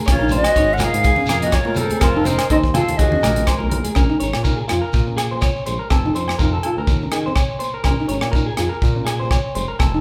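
A live-in-one-room sound with moderate large studio reverb frames this danceable highlife guitar band excerpt in Bb minor at 123 BPM, swung on the sixteenths, where a dry, up-front funk kit with a tight kick, a smooth sawtooth-and-triangle synth bass, a dark fingerpicked nylon-string guitar with finger squeak and a compressed, slightly broken-up electric guitar picking arpeggios carry the groove throughout. An airy, vibrato-laden wooden flute states the melody from 0.1 to 3.5 seconds over a raspy, growling alto saxophone second line in the background, while ringing agogo bells, a grainy distant shekere and hard-handed congas, heard until 4.0 seconds, sit further back. The chords move from Bbm7 through F and Ebm, then return to Bbm7, F and Eb5 before settling on Bbm7.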